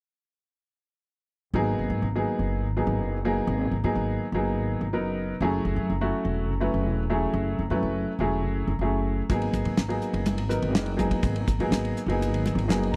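Electric jazz fusion in G# minor at 124 BPM, this funky, intense excerpt moves in a straight 4/4 feel. A clear, worn baby grand piano with long sustain carries the accompaniment from 1.5 seconds, alongside an up-front upright bass whose woody, thumpy gut-string pizzicato sits low. The harmony shifts from G#m9 to F#m9 and back to G#m9 at 9.3 seconds. At that point a damped 70s drum kit enters with a fat snare, tight kick, dark cymbals and a rolled-off top, joined by very quiet congas with a thick, medium-tuned skin. The piano plays a fill near the end at 12.4 seconds. The sound is dry and close, with little reverb, in the manner of a 1970s studio.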